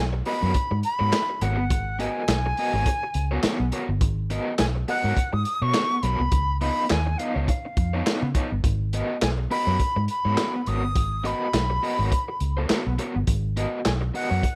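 A sly, cool funk groove at 104 BPM opens with an airy jazz flute, its melody carried with vibrato and a breathy chiff from a distant place in the light reverb, over a dark, round, foam-muted electric bass held up front. A bright, overdriven guitar with tremolo joins at 0.1 seconds, and at 0.3 seconds a gritty, saturated breakbeat kit with a tight kick, handclaps and hi-hat settles into a swung sixteenth-note feel. The harmony rests on G#m11 in G# dorian, moving to C#9 at 6.3 seconds before returning in this short cut from a longer piece.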